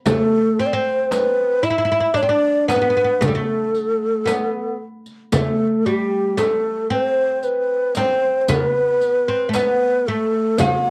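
In a straight 10/8, this stately, festive Arabic maqam ensemble passage, cut from a longer piece, places a breathy, close-miked low ney with vibrato up front on the melody over a woody, deep, fretless oud plucked with a plectrum on the second line, both tinted by cassette tape, while a crisp metal-shelled darbuka, a soft-handed frame drum heard at a distance in a large room, and a riq with bright jingles carry the percussion across the passage, and the home cassette recording has light reverb.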